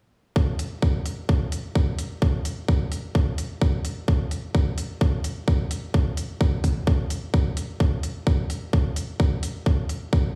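A tight electronic kick drum drives this quirky, cool minimal techno fragment in 4/4 with a light swing on the sixteenths, sitting up front beside clicky electronic hi-hats, both re-recorded in a large room so they carry the sound of a big system playing into a bare space.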